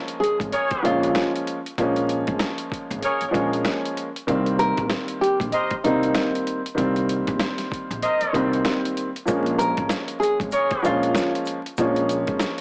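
The recording has the intimate feel of a home cassette, with vinyl crackle, a small-speaker sound and a moderate spring reverb in a small room. It is a moody, reflective boom-bap hip-hop excerpt that swings its sixteenths and moves from Bbm7 to Cm7 and back to Bbm7. A smooth, woody upright piano sits up front as accompaniment, and a gritty, compressed sampler-style drum kit with a thumpy kick and a medium-tuned snare drives the beat through 12-bit sampler grit and tape. A fingerpicked, full-bodied nylon-string guitar plays the classical-toned melody through analog delay, while a pizzicato upright bass on gut strings adds a dark low end. A mellow horn section with vibrato plays loose, vintage stabs with analog delay, and close, dry maracas join in the background at 9.3 seconds.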